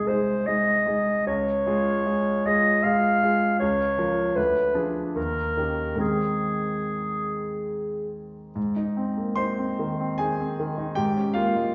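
The recording places the listener further back in a recital hall, with a wet reverb that lingers for about 1.3 seconds and wraps the duo in a roomy glow. This romantic classical piece for clarinet and grand piano moves in a gentle 3/4 at roughly 69-80 BPM, its rubato feel and key of Ab major giving it a serene, tender mood. The mellow, distant clarinet carries the melody as the up-front solo voice, singing from Ab4 to F5 until it falls away at 8.1 seconds. The bright concert grand supplies a brilliant, natural accompaniment with deep bass reaching down to C2, continuing alone until 11.7 seconds. Its harmony drifts from Ab/C through Db, a diminished chord and Eb7 before settling on Ab, then turning to Bbm/Ab at 11.0 seconds as the fragment, cut from a longer work, comes to a halt.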